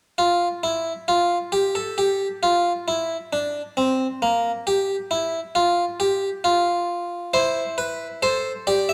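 Classical baroque-style three-part fugue for solo harpsichord, stately yet lively in a straight 4/4, its bright, plucked Flemish-style tone on a single set of strings sitting close and up front in a moderate recital-hall reverb, with the lines moving before settling on a C chord with E in the bass at 7.3 seconds in this short cut from a longer piece.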